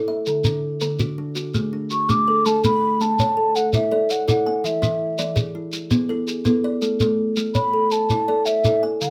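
A lightly reverberant sound opens this short excerpt of southern African traditional music, built on a rippling, hypnotic mbira-style interlocking cycle in 12/8 at 110 BPM, with a straight feel in A major. Two kalimbas start together at 0.0 seconds, both playing arpeggios: one has a woody, solid-board tone that sits close, dry and full at the front, while the other has a hollow-box body with a brighter, airy thumbnail pluck reaching up to A5. A grainy, mellow shekere joins at 0.3 seconds, placed close and dry near the front. At 1.9 seconds a hollow baroque flute takes the melody between E5 and D6, its pure wooden tone carrying vibrato and tongued notes, sounding distant yet still prominent in the mix. The harmony moves from D to A, then E, then back to A as the piece shifts into its second section at 2.5 seconds and carries on until the cut.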